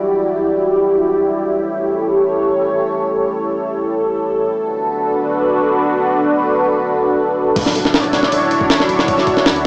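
Dark and atmospheric, this drum and bass and jungle fragment, cut from a longer piece, opens in free time with a lush, thick unison pad holding sustained chords up front, its detuned sawtooth and square-wave layers with a sub octave colored by chorus, phaser and cassette tape. A filter sweep moves across the pad through the opening 7.6 seconds as the harmony travels from Em9 through A7 to Bm7. At 7.6 seconds the drop arrives on Dmaj9, bringing in a jungle sampler-style kit of crash, kick, ride and snare that sounds compressed, pitched up and gritty, with a thumpy kick and medium-tuned snare placed up front and carrying tape grain. A deep, mellow sine-like 808-style bass sustains and decays in the background beneath it, while a very quiet electronic impact marks the moment. The whole is bathed in a moderate lush hall reverb and has the small-speaker character of a home cassette recording.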